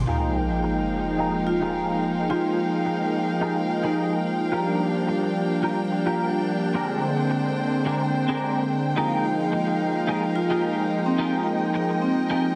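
A lightly swung 108 BPM groove in 4/4 drives this groovy, sleek nu-disco excerpt in F dorian, where a warbling, detuned analog pad with chorus, sampler grit and dub echo sits up front over sustained, vibrato-rich bowed violin chords, a clean, compressed picked electric guitar riff runs through a filter sweep with ensemble chorus and dub echo, an electronic sub drop lands with the opening impact, and a metallic, ringing vibraphone melody returns at 10.4 seconds in the background, all moving through Fm11, Gm7 and Bb13 under plate reverb and a heavily compressed, radio-like sheen.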